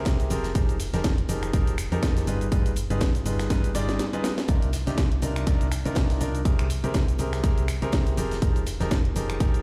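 Piano house at 122 BPM in C minor, this energetic, soulful excerpt rides a swung sixteenth-note groove cut from a longer piece. A smooth, vintage grand piano carries the riff through rich chords such as Abmaj9/C, Fm11, G7b9b13 and Cm11, its tone treated with delay and sidechain pumping. Beneath it, a round, dark FM bass with a fast attack and decaying notes pumps in the same way, while a punchy, tape-tinged electronic kick sits up front. A layered house kit adds cabasa, finger snaps, hi-hat and a cracking snare, and a very quiet, airy acoustic kit contributes a medium-tuned snare and hi-hat, with a drum fill arriving between 3.5 and 4.5 seconds. The whole mix sounds as if played on a big sound system in a bare room, with large studio reverb lending space.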